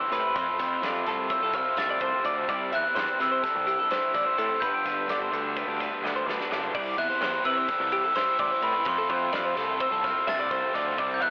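This math rock and midwest emo excerpt feels bright and wistful, racing along at 254 BPM in a straight 9/8. An up-front glockenspiel struck with brass mallets carries the melody in a dark, smooth, bell-like ring. Around it, a chiming twelve-string electric guitar plays compressed arpeggios with subtle chorus and plate reverb. A double-tracked, crunchy overdriven guitar drives the riff, and a round, fuzzed-out picked bass adds weight. A very quiet, fingered twangy guitar adds accompaniment until 6.7 s, as a drum fill from 6.0 s wraps up. The acoustic kit brings a punchy kick, a medium-tuned snare and glittering cymbals, all within a small room and a blown-out, telephone-like overdriven sound, as the chords move through F6, C6 and G.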